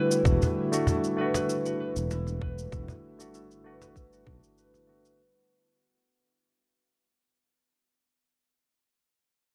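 An overdriven electronic kick sits up front in this earthy, hypnotic organic downtempo fragment, joined by a growly fretless bass with sidechain pumping, a soft-handed woody cajon, a tape-warm cabasa, a clean tine electric piano with tremolo, tape echo and a filter sweep, an airy chorused pad sustaining Em7, and fingerpicked concert harp arpeggios that also sweep through a filter and ring on alone until 8.0 s after a fade-out, set in a dark production with light digital ambience.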